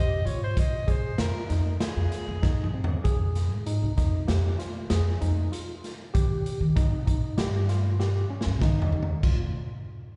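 A straight, uneven five-beat pulse drives this tense, brooding slice of progressive instrumental band music, cut from a longer piece and heard as a live club gig through the venue's sound system with a dulled top end and club reverb. A breathy, whispered soprano saxophone sings a short jazz-style solo melody with vibrato and a soft attack, sounding distant and roomy under slapback and tape echo before it falls silent at 2.7 seconds. A worn, slightly out-of-tune tine electric piano keeps up mellow arpeggios throughout, lightly overdriven through its built-in speakers and carrying the same slapback and tape echo. Beneath it, a woody upright bass with steel strings is plucked pizzicato and sits prominently in the mix, moving from Fm7 to an Eb chord. The raw garage drum kit arrives at 0.3 seconds, up front with a punchy kick, a medium-tuned snare and a rolled-off, smooth top in a bright stone room, and it marks the sections with fills, the last one starting at 8.0 seconds.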